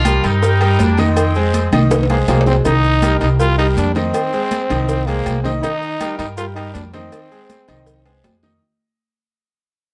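Driving and passionate, this salsa fragment moves at 161 BPM in a straight 4/4, cut from a longer piece and set in a dark production with light reverb. A bright, punchy trumpet section with vibrato opens the melody for only the first 1.7 seconds, and midway through a drum fill a growling, gritty trombone takes over as an up-front solo from 2.1 seconds, raspy and brilliant with its own vibrato. Underneath, a woody, thumpy upright bass played pizzicato on gut strings sits up front, while a present grand piano with long sustain and audible action noise supplies the accompaniment through changes from Cm7 and Fm7 to Abadd9 and F9sus4. The percussion bed is busy but set back: high-tuned congas struck with hard hands, ringing metal-shell timbales with agogo bells, a tight, very quiet cowbell and bongos, a raspy guiro and grainy maracas. The second section fades out from 2.7 seconds to the end, with another drum fill arriving near 8.1 seconds.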